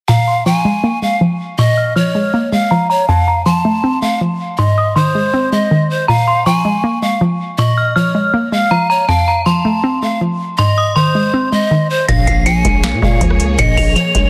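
A ringing FM bell melody, a breathy pan flute line with tape echo and a hollow, detuned square pluck open this melancholic, dark trap cut in Bb minor at 160 BPM half-time over a filter sweep, until at 12.1 seconds lush symphonic strings, a growling 808-style bass and a booming analog drum machine with a deep kick, crisp snare and finger snaps arrive in a dense, heavily limited mix.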